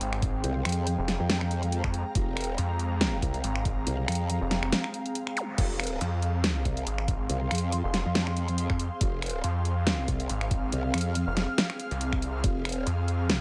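Heavy wobble dubstep in F minor at 140 BPM with a half-time, swung feel, this aggressive, chaotic cut from a longer piece drops straight in on an overdriven, snarling sawtooth bass and a chorused, formant-filtered growl bass wobbling up front, over a dubstep kit with a huge snare, bright hats and finger snaps, plus a knocking, tape-warm electronic kick. A lush, sidechain-pumped supersaw pad hangs in the background until 5.6 s, while an ethereal, airy pad with ensemble chorus and built-in reverb floats above for the whole passage. A brief break near 4.7 s carries a quick electronic zap at 5.4 s before the second drop hits, all set in light reverb.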